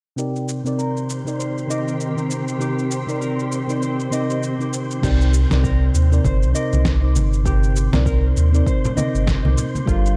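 A dark production with light reverb and a digital ambience frames this brief cut from a smooth sunset chillout piece, moving at 99 BPM in 4/4 with a relaxed sixteenth-note swing over a Cm7 chord. Up front, a round, full-bodied FM electric piano carries the accompaniment through chorus, low-pass filtering and tape echo, while a clean, fingered electric guitar plays arpeggios through its own filter and tape echo; both parts pass through a filter sweep in the opening half. A gritty sampler-style kit with a fat, overdriven snare, shaker and crash cymbal gives the groove a dusty edge, and an airy, breathy, wind-like noise texture drifts through the mix. A shimmering, ethereal pad with an octave-up sparkle holds sustained chords from 1.0 to 5.0 seconds, and at 5.0 seconds a deep, sine-toned sub bass arrives up front together with a layered electronic kick in the background. Soft-handed congas join at 6.3 seconds, adding bright, saturated acoustic percussion.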